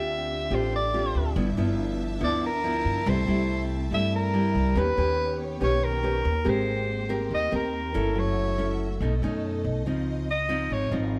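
Bossa nova at 141 BPM with a breezy, relaxed mood, in which a soprano saxophone with light vibrato and scooped notes carries a jazz-style solo bathed in roomy plate reverb over warm, fingerpicked classical nylon-string guitar, woody pizzicato upright bass and a lush, soft-attack symphonic string section bowing sustained chords, the harmony moving from Dm11 through Abmaj9 to Dbmaj9 in a moderate studio room, a passage cut from a longer piece.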